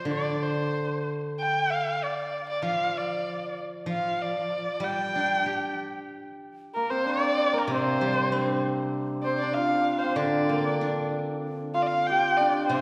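Chinese traditional chamber music, wistful and tender, moves at 95 BPM in a straight 2/4 in this fragment of a longer piece. A dark-toned erhu carries the melody up front from the opening, its bowed line shaded with vibrato, portamento and a soft attack, expressive with a smooth top. Beneath it, a steel-string zither plucked with fingerpicks supplies a ringing, silvery accompaniment throughout. At about 6.7 seconds, as the piece moves into its second section, an airy bamboo xiao joins in the background as a second line in the same register as the erhu, with vibrato and lifted highs, and a shimmering hammered dulcimer enters up front at 6.8 seconds with its own ringing second line. The ensemble sits back in a wet concert hall whose long reverb lends the whole a spacious, distant glow.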